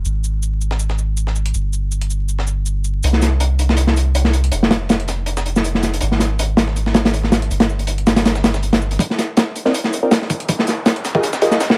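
A sampler-style breakbeat of hi-hat, shaker and snare ticks along at 161 BPM with a slight swing from 0.1 seconds. A crunchy, saturated acoustic kit with a tight kick and a dark, rolled-off top lands up front at 3.0 seconds, driving this frenetic, atmospheric drum and bass and jungle excerpt in C minor over a round, deep dub sub bass and a haze of vinyl crackle. As the bass drops away at 9.0 seconds, the cut turns into a build-up, where a nasal, band-passed sawtooth chord stab with chorus, phaser and dub echo hits Cm11 and then Fm11 while an electronic riser rises in the background.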